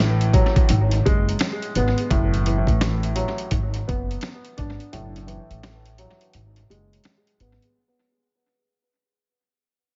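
Swung sixteenths at 85 BPM drive this gritty, tough boom-bap hip-hop fragment: a dusty, compressed sampler-style kit with a thumpy kick, medium-tuned snare and hi-hat comes in overdriven and up front at 0.2 seconds, a growly, woody pizzicato upright bass sits low under F#m7 and G#m7 changes, and a clear, vintage upright piano treated with cassette tape and tape echo moves through a filter sweep, set in a small, echo-heavy room with dulled highs that fades out over its 7.8 seconds and breaks down at 4.9 seconds.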